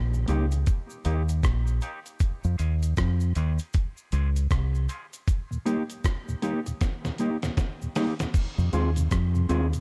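Dub reggae with a meditative, spacious mood and a dark, dry production, built on a round, up-front fingered electric bass and a gritty sampler-style drum kit with a thumpy kick and fat snare, while a clean guitar with warbly pitch drift and dub echo, a soft, flute-like tonewheel organ with chorus vibrato and key click, and a background cabasa fill out the sound, with a filter sweep running until 5.3 seconds and a drum fill from 6.8 to 8.3 seconds in this section cut from a longer piece.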